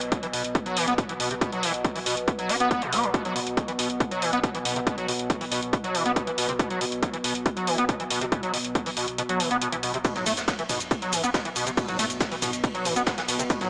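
Driving peak-time techno at 139 BPM, hypnotic and insistent in feel, built on an overdriven, heavy electronic kick up front that drops out from 9.2 to 10.0 seconds, a punchy analog drum machine with pumping hi-hats, shaker and toms, a squelchy, gritty acid bass riff with resonant filter sweeps, ensemble chorus and tape echo, a deep saturated sub bass in the background, an evolving sawtooth drone with pulse-width modulation and chorus, and a dark-cymbaled jazz brush kit of hi-hat, ride and snare that enters at 10.0 seconds, all set in a lush hall reverb with a small-speaker sound in this excerpt cut from a longer piece.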